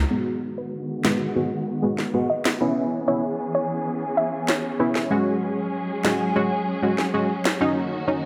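A dreamy, reverb-soaked plate sound with a filter sweep running throughout frames this sultry, tough dancehall excerpt in G# minor at 96 BPM, where a dark, lush bowed string section holds sustained chords with expressive vibrato. A punchy, detuned sawtooth chord stab accompanies them up front through G#m7, C#m7, F#sus2 and D#m7. A soft, round pluck carries a gentle melody from 0.6 to 4.9 seconds through chorus and analog delay, and a sharp electronic snare enters at 1.0 seconds.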